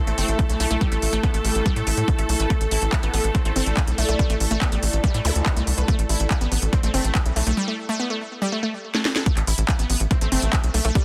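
This driving, hypnotic slice of psychedelic trance opens on a swarming, tense drone of sustained chords and a dark, lo-fi pad with a nostalgic warble, both sitting in the background with reverb and sidechain pumping, while a very quiet metallic wobble bass adds a distorted second line underneath. Almost at once a lush, detuned unison pluck sets up the riff through delay and pumping, and a tight sawtooth sequencer bass drives the low end with fast, decaying notes placed up front. A techno kit brings a cracking snare, smooth hi-hats and handclaps with a tape-like sheen, and a punchy, layered electronic kick joins at 0.4 seconds in a straight feel. A brief electronic zap flickers in the background at 5.2 seconds. A drum fill leads into the drop at 9.3 seconds, where the wobble bass returns for a moment. The whole sits in a digital ambience with a dense, heavily limited modern master.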